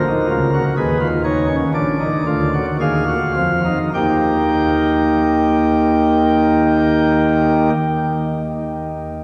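Classical baroque-style three-part fugue for solo pipe organ, serious and solemn in mood, cut from a longer piece, with bright, sparkling flute stops voiced up front across a range from Bb1 to G5. The opening passage slows down through its first 3.9 seconds as the harmony moves from Bb7sus4 to Bb7 and settles on Eb, after which the organ continues until 7.7 seconds. A long cathedral reverb surrounds the playing, and a faint mains hum sits beneath it.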